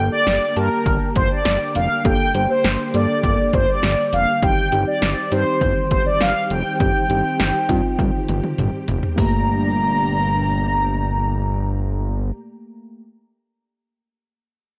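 Nocturnal and driving, this synth-pop excerpt sets a bold, brassy analog synth lead with chorus and slapback echo over muted, felt-like synth keys, a warbling organ-string pad in the background, a fat, detuned analog bass up front, and a punchy, overdriven analog drum machine whose fill at 8.0 seconds leads into a short new section at 9.2 seconds, all in a light reverb.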